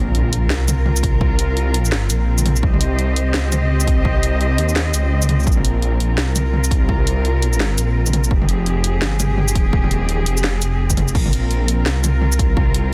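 Half-time drum and bass at 169 BPM in 4/4, with a swung sixteenth-note feel, this dark, heavy excerpt is cut from a longer piece. A very quiet electronic impact opens it and lasts until 1.2 seconds, while a deep, rumbling detuned saw bass sits up front, its saturated, beating sawtooth tone blended with sine and sustained under the whole passage. A studio cello section holds smooth, bowed chords with vibrato, pumping against the sidechain as the harmony moves from Bbsus2 through Cm and Fm and back. A layered kit of cracking snare, bright hats, shaker, toms and crash cymbal, re-recorded in a small room and placed up front, enters at 0.1 seconds, and the electronic kick drum joins at 1.0 seconds with a heavy, tape-warm thump. Little reverb touches the mix, and the dense, heavily limited master keeps the sound close and forceful.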